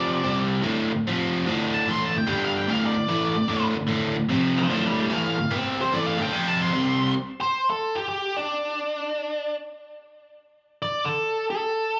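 Heard through a club PA with a moderate club reverb, this heavy, smoky rock fragment in D minor swings its eighths at 148 BPM. A biting, double-tracked overdriven guitar up front picks out a riff over C5, D5, F5 and G5 chords with a brief Dm, while a dark octave-fuzz lead guitar, distorted and carrying slapback echo, plays the melody above it. The riff guitar drops out at 7.1 seconds, and from 7.2 seconds the fuzz lead takes a solo alone until the cut at 12.0 seconds.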